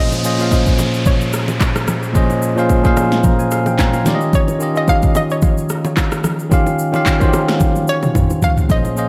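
Amapiano at 110 BPM with a light sixteenth-note swing, hypnotic and soulful, cut from a longer piece and bathed in a lush hall reverb that gives the mix a dreamy haze. A bell-like tine electric piano carries the Bbm11 to Eb9 chords up front, adding a fill at 3.2 seconds, while a hollow, nasal square pluck with chorus and analog delay sings the melody and a downlifter sweeps through the opening 4.3 seconds. Underneath, an overdriven deep house kit with a deep kick, punchy snare, handclaps, rim clicks, shaker and toms drives the groove, rolling into a drum fill at 7.6 seconds, as dry, hard-hand bongos and congas sit in the background.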